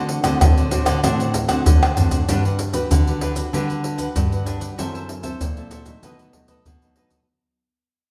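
Lively and festive, this samba-choro cut opens with a very quiet, crisp cavaquinho melody that stops at 1.9 seconds, while a second, bright cavaquinho picks the accompaniment. Two fingerpicked classical nylon-string guitars, one full-bodied with audible finger squeak, carry the chording and bass line beneath up-front, close and dry pandeiro, maracas, tight surdo and soft-handed tamborim. A drum fill leads into a fade-out from 2.3 seconds, with the band heard playing together in a large, reverberant studio room.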